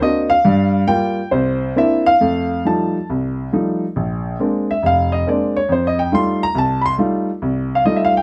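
Sophisticated and relaxed, this brief solo jazz fragment is cut from a longer piece and lasts just over 8 seconds. A lone grand piano carries everything, its tone smooth and vintage, placed up front with a light reverb around it. The tempo sits at 138 BPM in 4/4 with a swung eighth-note feel, yet the playing also stretches time with a rubato looseness. Rooted in F mixolydian, the harmony moves from Gm7 to C9 before settling into a run of F9, Bb9 and back to F9. The piano spans a broad register from the deep bass up to high treble, giving this short passage a full, unhurried character.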